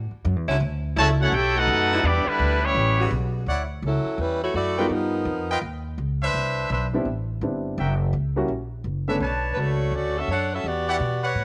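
Big band swing in a joyful, swinging mood, this short cut from a longer piece rides on a woody, growly plucked upright bass that runs throughout. A brilliant, vintage-toned trumpet section carries the opening melody over a trombone second line and soft-attack saxophone chords; then, at 3.5 s, a clear, smooth-topped trumpet section turns to tight stabs, and from 3.9 s the saxophones take up the melody with vibrato. A natural-sounding baby grand piano adds accompaniment from 4.8 s, and the band plays in a small room with light reverb.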